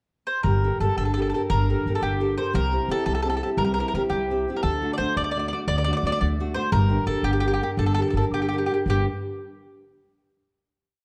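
Passionate and wistful, this short, complete Italian folk serenade moves in a rubato 6/8 at 114 BPM counted in dotted quarters, set in G harmonic minor. Entering during the brief pickup, a bright, round mandolin sings the melody on its double strings in song-like phrases built from a recurring motif. A nylon-string guitar accompanies in classical fingerpicked style, alternating bass notes with chord figures in an oompah pattern, with an occasional finger squeak. Up front, a pizzicato upright bass with a woody, thumpy tone plays root and fifth on the main beats, entering at 0.4 seconds. The harmony moves from G minor with an added ninth through C and D before returning to G minor, closing on a final chord at 8.9 seconds. A moderate recital hall reverb surrounds the trio in a dark, warm production.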